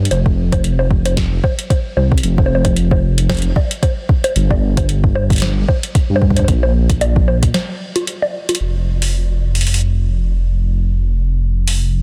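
A dark, detuned sawtooth bass rumbles up front through this glitchy, eerie IDM excerpt at 113 BPM with a 16th-note swing, joined by an overdriven electronic kick until a break at 7.5 seconds, while a booming analog drum machine's bongos, crisp snare and metallic hats echo as if in a large room, with a drum fill at 8.3 seconds leading into a new section, all in a dense, heavily limited mix with little reverb.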